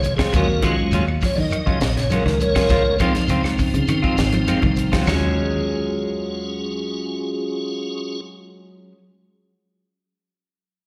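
A piping tonewheel organ sits up front and takes a solo from the start, its scooped, clean tone coloured by key click, chorus vibrato, a slow rotary speaker and a slapback echo. This funky, hypnotic afrobeat fragment moves at 101 BPM in a straight 4/4, in Eb dorian, over chords of Ebm11 and Dbmaj7. Underneath, a dark, foam-muted fingered electric bass gives a round bottom, and a tight funk kit with a high-tuned snare and a dry kick drives the groove, adding a drum fill at 4.3 seconds. In the background, a picked clean electric guitar plays arpeggios, while a second, dark, fingered clean guitar adds stabs through a slapback echo. The percussion layers a grainy shekere, woody claves and very quiet congas with a thick skin, and the drums and percussion stop at 5.2 seconds, leaving the organ, bass and guitar stabs. The sound is that of a live gig heard through the venue's PA, with light recital hall reverb.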